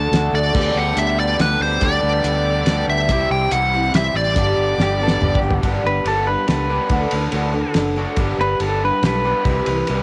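A cloth-damped, thuddy drum kit with a fat snare and dark cymbals drives this hopeful folk and heartland rock excerpt in a straight 3/4 at 141 BPM in G major. Round fingered electric bass, a shimmering, octave-doubled twelve-string acoustic, a raw, double-tracked garage guitar riff and a very quiet, reedy tonewheel organ with slow rotary support a nasal, overdriven parked-wah lead guitar, which carries the melody until 5.4 seconds. A drum fill from 4.8 seconds brings in a clean, compressed slide pedal steel guitar, played with fingerpicks and treated with analog delay, that takes a solo from 5.6 seconds, all within a cassette home recording with light reverb.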